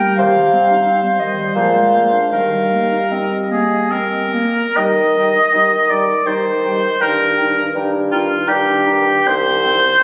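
In a rubato 3/4 at 66-90 BPM, this melancholic, elegiac slow romantic movement for wind quintet in Eb major, cut from a longer piece, sets a pure, straight-toned concert flute melody over an up-front oboe second line with light vibrato, while a soft-attack, distant French horn and a smooth-topped clarinet supply mellow accompaniment and a bassoon enters at 0.2 s on the bass, passing through Cm, Bb9 and Eb in a moderate concert-hall reverb with a phone-in-the-room recording and compression.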